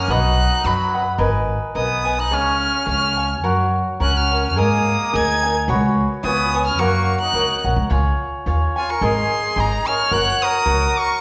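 A lush recital-hall reverb wraps this short mariachi passage, cut from a longer piece and captured in a church or concert hall, giving it a romantic, proud air. High above, a single bowed violin carries the melody with smooth, even tone and singing vibrato, placed close and up front. Beneath it, a solo trumpet in classical style plays a second line with a punchy attack and light vibrato, sounding distant and roomy in the space. The picked cavaquinho supplies crisp acoustic accompaniment up front, while a woody pizzicato upright bass anchors the low end until it drops out at 10.9 s. The 2/4 feel carries a gentle swing and some rubato, and at 7.9 s the music moves into a new section with a shift of harmony before the passage breaks off at 11.2 s.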